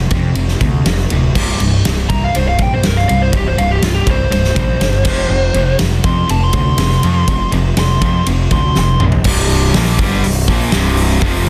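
Hard rock at 122 BPM with a swaggering, energetic drive, this excerpt sets a punchy, fuzz-laden picked bass and a big, up-front acoustic drum kit with bright cymbals and a clipped kick alongside two picked riff guitars, one cranked and one tight and distorted, while a biting overdriven lead guitar sings from 2.1 to 9.0 seconds, a drum fill leads into a crunchy double-tracked guitar riff at 9.3 seconds, and the power chords move between F5 and C5 in a dense, heavily limited mix with light reverb.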